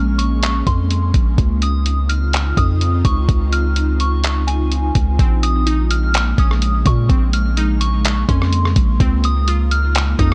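A dry, close-sounding mix gives this hazy, spacious stretch of atmospheric cloud-rap a sense of nearness, even as its synths drift; it is cut from a longer piece, moving at 126 BPM in a half-time 4/4 feel in Bb minor. From the start, a soft, pure FM synth bell carries the melody high up, treated with chorus, phaser and delay, while an ethereal, airy pad holds sustained chords beneath it, its detuned unison voices softened by ensemble chorus and built-in reverb and gently pumping against the beat. A deep, long 808-style bass with a sine tone sits up front and decays under each note, joined at 0.2 seconds by a compressed, pitched-down, muffled sampler-style drum kit with a thumpy kick, handclaps, hi-hat and rim click. The harmony moves from Bbm7 to Dbmaj9, then to Bbm11 as a second section begins at 5.2 seconds, where a glassy, crystalline wavetable pluck enters with bright, detuned arpeggios, a filter sweep, chorus and delay, before Dbmaj9 returns at 9.0 seconds.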